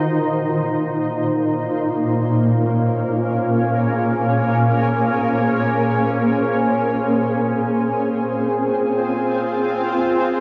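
A shimmering, ethereal pad with an octave-up sparkle and a granular, wave-folded edge sits up front alone in this reflective, spacious ambient excerpt, its slow-attack, long-release tones spanning Bb2 to C5 and moving from Bbm7 to Fm at 7.5 s, with chorus and a huge, wet reverb giving the dark production its vast sense of space.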